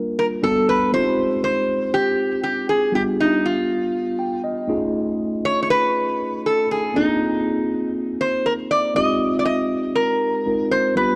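Nocturnal and bittersweet, this pop excerpt moves at 120 BPM in a straight 4/4, set in F dorian and cut from a longer piece. A mellow tine electric piano carries the accompaniment from the very start, its clean tone coming through built-in speakers with a subtle chorus. Just after, at 0.2 seconds, a metal-body resonator slide guitar takes the melody, played with fingerpicks and sounding acoustic, metallic and nasal as the slide glides between notes. Both parts sit up front, and the electric piano adds a brief fill between 3.9 and 4.9 seconds. The harmony drifts through rich extended chords such as Gmaj9, Fm9, F7alt and Bb9sus4, lending a bittersweet colour. A moderate plate reverb and a dark, warm production give the pair a soft, late-night glow.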